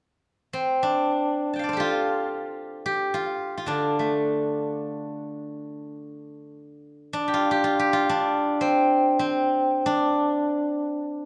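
The recording has light reverb and places a steel-string zither up front. This short excerpt of Chinese traditional music for solo plucked strings carries a longing, elegant mood. The zither enters at 0.5 s and plays alone until 11.3 s, moving between D3 and A5. Played with fingerpicks, its acoustic tone is silvery, ringing and warm. The passage is cut from a longer piece and stays within a single section throughout.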